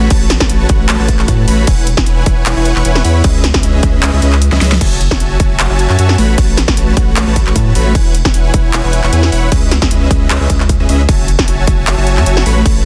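A dense, compressed supersaw riff leads this euphoric, playful future bass clip, its huge, detuned sawtooth stack pumping against the sidechain and trailing a tape echo as it cycles through lush A69, E6, C#m9 and F#m9 chords. Beneath it a deep, saturated sub bass pumps in step, while an overdriven, punchy electronic kick and a big-room kit with a huge snare, handclaps, hi-hat and crash drive a swung half-time groove. The kick drops out from 4.0 to 4.8 seconds around a drum fill at 4.5 seconds, and the dry, heavily limited mix stays loud and dense throughout this cut from a longer piece.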